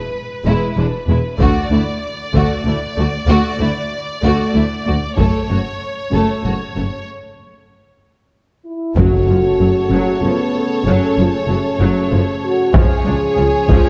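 Epic orchestral film score in 3/4 at 95 BPM, dramatic and dark, cut from a longer piece in F# minor: a distant, rich violin section carries the melody over a close viola section, a lush second violin line, a biting double bass section and a cello section in the background, while solo taiko drums struck with hard sticks enter at 1.4 s with a vintage, band-limited sound. After a build-up and a short break, the music pivots at 9.0 s into harmonic minor as a huge impact, an articulate hit of hard-mallet timpani and a clear trombone section arrive, joining the French horns that began their sustained chords at 8.6 s. The mix sits in a moderate scoring-stage reverb, with chords moving from E and D to F# minor and closing on C#.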